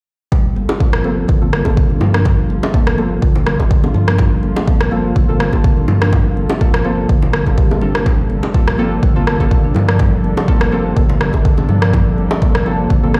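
This excerpt of afro house opens at 0.3 seconds on a Gm11 chord, with a slow-attack analog pad warbling in the background, a woody soft-mallet marimba playing arpeggios through a filter sweep and tape echo, an overdriven electronic kick drum up front, and hand percussion from tight, high-tuned bongos and very quiet, vintage-toned congas. The groove sits at 124 BPM in 4/4 with a light swing on the sixteenths, and the mood is warm and spiritual in G minor. A round, sine-like sub bass enters at 0.6 seconds, followed by a dark, detuned chord stab with chorus and tape echo. An overdriven electronic rim click joins at 0.9 seconds. The pad, marimba, bass and stabs all breathe with sidechain pumping, while the whole mix carries a stone-room reverb, as if played on a big sound system in a bare space.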